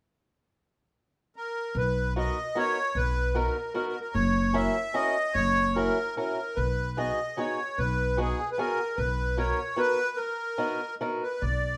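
A reedy, sweet accordion with light tremolo tuning carries a whirling, nostalgic musette waltz melody in a rubato three, joined at 1.7 seconds by a woody, thumpy upright bass on gut strings and at 2.2 seconds by a dark, boxy fingerpicked swing guitar, all three up front in one room with a wet studio reverb, moving through Bmaj7, F#7 and B6 before a break at 10.2 seconds in this fragment of a longer piece.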